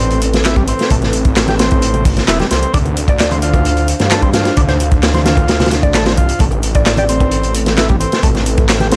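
A crunchy, saturated breakbeat drum kit with a punchy kick sits up front alongside a thick, menacing detuned saw bass, a buzzy vintage combo organ riff with tube saturation and delay, and a deep, moody analog pad pumping in the background, while an overdriven analog drum machine adds dry handclaps and hi-hat, distant congas and bongos enter very quietly at 0.3 seconds, and a woody, mellow mallet-like synth pluck carries the melody from 3.1 to 7.4 seconds in this energetic, gritty breakbeat clip with a small-room ambience.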